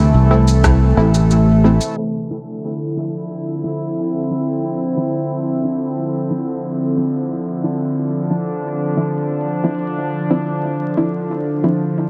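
A warbling, nostalgic sawtooth pad with slow attack and chorus opens this hazy, deep ambient dub excerpt at 90 BPM in D minor, joined from the start by muted, filter-plucked dub chord stabs with echo sitting in the background and a punchy, up-front fingered electric bass, while a tight electronic kick and a low-pass-filtered shaker and rim click with dub echo flicker briefly before the bass and drums fall away by 1.9 seconds, leaving pad and stabs to move from Am to Dm9 at 2.0 seconds under a filter sweep, inside a huge 5.2-second reverb and vinyl crackle.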